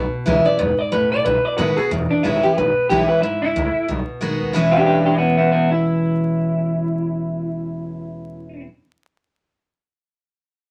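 Vinyl crackle and a moderate studio reverb frame this short, rowdy, rollicking rockabilly cut from a longer piece, swung in 4/4 and moving between E6 and B6 chords. A bright, full-bodied steel-string acoustic guitar and a thumpy, woody upright bass with gut strings open the track together, while at 0.5 s a twangy, slightly broken-up electric guitar through a small old amp joins up front to carry the melody.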